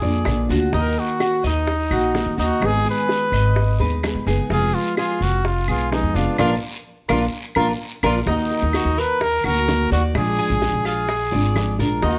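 Nostalgic and warm, this Cuban son and guajira excerpt sets an intimate, breathy trumpet melody with vibrato up front over a thumpy pizzicato upright bass, a full-bodied fingerpicked nylon-string guitar and the metallic picked arpeggios of a Cuban tres, while tight high-tuned bongos and woody claves sit in the background alongside a raspy guiro, the band hitting an accent from 6.4 to 8.3 seconds before moving into a new section in light reverb.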